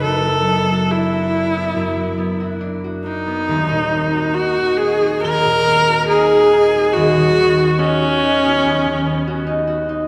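Bathed in a wet church reverb, this wistful, mysterious impressionist classical duo drifts in a rubato 4/4 at 70 BPM, as a focused, close bowed viola sings the melody up front with vibrato until 9.5 s over a bright, ringing fingerpicked concert harp that carries the accompaniment through D69/F#, D#m6 and Badd9/D# to the end of this fragment of a longer piece at 10.1 s.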